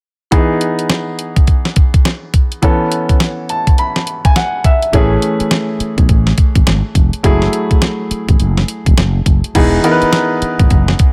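The recording sounds dry, with little reverb, and comes from a longer piece. It is a bouncy, upbeat new jack swing R&B groove at 104 BPM in 4/4, with a 62% swing on the sixteenths, set in E major and tuned to A4 = 439 Hz. A clean, sampler-style 12-bit drum machine sits up front from 0.3 seconds, with a thumpy kick, a fat snare, hi-hat and crash cymbal carrying a tape-warm character. A clear, polished baby grand piano, also present and forward, plays accompaniment through chords moving from Emaj7 to B9sus4, Amaj7 and F#m9, and adds a fill between 3.2 and 4.9 seconds. At 4.9 seconds a sustaining fretless electric bass enters low in its range, sounding bright, direct and growly, and at 9.6 seconds the music settles back on Emaj7 for a short closing section.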